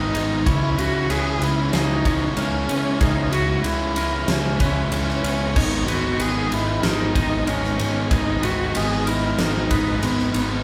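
Brooding and cathartic, this post-rock passage, cut from a longer piece, sets a veiled, muted cello melody with vibrato up close over a band playing live in one reverberant room. Two overdriven electric guitars play a riff in the background, one warm and one dark and compressed, while a very quiet semi-hollow guitar and a twangy one spin clean arpeggios alongside a growly fuzz bass. Up front, a huge arena drum kit hits with a punchy kick, fat snare and bright cymbals as the harmony moves from C#m7 to G#madd9 at 5.6 s.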